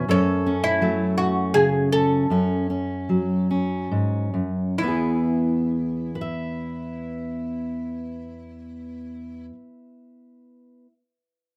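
An oud and a fingerpicked steel-string acoustic guitar open together in this short, nostalgic and pastoral folk piece in 3/4, cut from a longer work. The plectrum-plucked oud carries the melody with a bright, woody, double-strung tone, and the full-bodied dreadnought guitar accompanies alongside it; the pair eases into a slowdown over an F#m chord before moving to E at 4.8 seconds. Both instruments sit up front in a small, moderately reverberant room with a rough home-demo feel, and the oud drops out at 9.5 seconds while the guitar rings on until 10.9.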